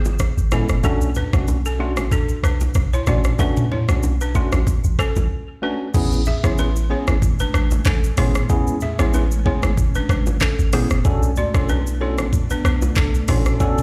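A deep, boomy 808-style bass opens this joyful, sunny afrobeats passage at 0.0 seconds, its fast-attack, decaying sine tone sitting up front. An electronic afro-pop kit arrives almost at once, with a knocking kick, metallic hats, handclaps, rim clicks, shaker, toms and crash cymbal driving a gently swung groove, while soft-handed bongos and congas add acoustic color in the background. A clean tine electric piano bathed in plate reverb lays down the chords as a woody, buzzing balafon, struck with hard rubber mallets and echoed by delay, plays a dark, smooth riff. After a short break at 5.3 seconds, an ethereal, airy pad of detuned sawtooth and triangle tones with ensemble chorus and a moving notch rises slowly into the background at 6.8 seconds, sustaining long chords. The whole piece rings out through a big sound system in a bare stone room, giving it a light, echoing space.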